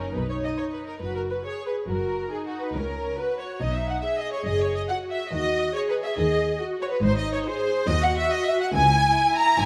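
This quick classical-period movement for string orchestra, cut from a longer piece, moves at 140 BPM in a straight 4/4 in B major with a lively, cheerful mood. One violin section carries the melody from a distant place in the background with a smooth, even vibrato, while a second violin section sits up front on a second line, bowed with a soft attack and expressive shading. Close and up front as well, the violas supply accompaniment in a narrow middle register, their tone smooth and steady. The low end enters at 0.1 s, where an expressive cello section adds portamento to its bass line and a focused, lush double bass section underpins it with a smooth top. The harmony travels from B through F# and back to B, then to a rootless Emaj9/D#, G#7 and finally C#m by 8.7 s. A moderate scoring-stage reverb gives the rich ensemble a natural sense of space.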